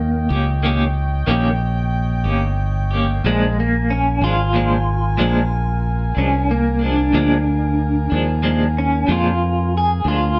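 Soulful and swaggering, this slow blues excerpt moves at 62 BPM in a straight 12/8, shifting from Eb7 to Bb7 at 3.2 s. A bright, twangy, slightly broken-up guitar through a small old amp carries the melody with tremolo, while a clean, picked electric guitar, also with tremolo and featured as a solo voice, sits alongside it over a dark, round fingered bass. Behind them, a mellow, tight jazz-style horn section holds sustained chords with light vibrato, all in a moderate studio reverb.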